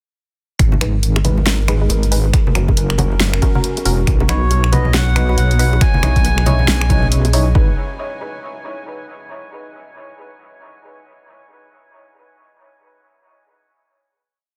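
Deep dubstep with a heavy, meditative mood, this short piece drops at 0.6 seconds into a swung half-time groove, led by an up-front, detuned wobble bass whose wobble speed shifts across its phrases and a punchy electronic kick. A deep house kit adds a fat, softly clipped snare, finger snaps and hi-hats, ringing congas and bongos echo in the background, and muted off-beat dub chord stabs with echo sit over a moody, wave-folded analog pad. A reedy, breathy melodica enters at 4.3 seconds with a free, echoing line, and the piece settles on a final chord at 7.6 seconds in a dry, dense and heavily limited mix.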